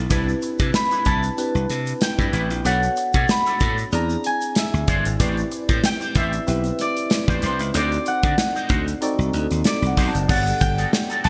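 Glossy 1980s-style digital production with light reverb frames this breezy, lightly swung jazz-funk pop excerpt, where a ringing, fingerpicked concert harp carries the melody over a worn, slightly out-of-tune tine electric piano bathed in lush chorus, a punchy, up-front slap bass, a twangy envelope-filtered guitar riff with analog chorus, a studio drum kit with gated reverb and bright cymbals, and a grainy tube shaker in the background, with the electric piano adding a short fill at 9.3 seconds before the harmony settles on Gmaj9 at 10.3 seconds.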